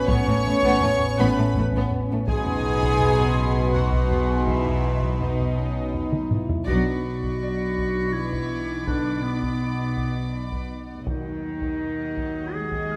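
A moderate scoring-stage reverb surrounds this uneasy, ominous suspense cue in 3/4 at 82 BPM, cut from a longer cinematic score, where sul tasto violin sections float a soft-attack melody, a second line and a high texture over warm violas, a rich cello section, bowed double basses with light vibrato, a mellow French horn section holding chords in the background, and a calm, warbling organ-like drone with chorus. A very quiet fingerpicked concert harp rings through while close, dry taiko drums struck with heavy sticks add weight, and their fill at 6.1 s leads to a full ensemble accent at 6.7 s. There a clear, distant clarinet enters with a second line as the harmony moves from Aadd9 and B to Bm and D#m.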